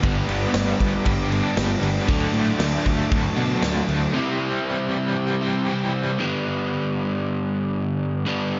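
Light reverb and a gently muted top end frame this swaggering, confident classic rock fragment, where an up-front, bright, compressed overdriven guitar riff over G, D and C is joined by a faint, double-tracked second guitar, a background cranked stack guitar with tremolo, a fuzz-laden picked bass, a very quiet, piping tonewheel organ with key click and slow rotary speaker, and a big-room drum kit with a tight kick, until the drums drop out at 4.0 seconds and the leading guitar plays on alone from 6.2 to 8.6 seconds.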